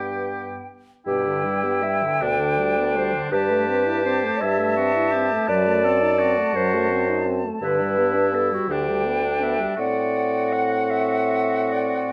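An up-front, mellow bassoon anchors the bass beneath a pure, vibrato-touched silver flute melody in this serene, slow romantic movement for wind quintet in G major, its 6/8 lilt at 45-57 BPM flowing with rubato as a soft-edged oboe carries a distant second line and a warm clarinet and a roomy French horn share the accompaniment, heard close and detailed within a moderate recital-hall reverb across this 12.1-second passage cut from a longer piece.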